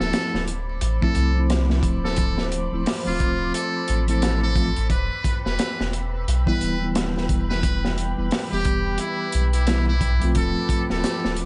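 A small room sound with vinyl crackle and a dulled, capped-off top end frames this dark, brooding trip hop excerpt, moving at 88 BPM in 4/4 with a swung sixteenth-note feel in D dorian. Up front, a crunchy, saturated breakbeat kit of kick, snare and hi-hat sits beside a round analog bass with a fast attack and a filter sweep. A mellow tine electric piano carries the accompaniment through harmonic tremolo and tape echo, while a deep, detuned ambient pad holds moody sustained chords high above, softened by chorus and its own reverb. Over this, a trumpet with a metal mute plays a buzzy, thin, jazz-style solo line with vibrato, sounding distant and roomy through tape echo, and a faint, breathy wind-like noise texture drifts in the background. The harmony moves from Dm7 to Em at 4.9 seconds and back to Dm7 at 10.4 seconds, and a barely audible tube shaker touches in at 11.1 seconds just before the cut.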